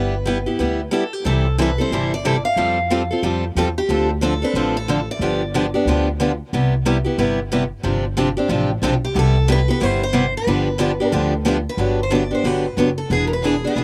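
Acoustic string swing in the jazz manouche style at a playful 182 BPM, this dry, outdoor-sounding cut from a longer piece in C major features a boxy picked steel-string parlour guitar carrying the melody with audible finger squeak and slapback echo, pausing between 5.7 and 8.8 seconds, while a bright, up-front picked guitar with its own slapback echo and a second, fresh-stringed guitar in the background pick their way through changes such as C6, Fadd9, Dm7 and G7 over a woody, thumpy pizzicato upright bass on gut strings.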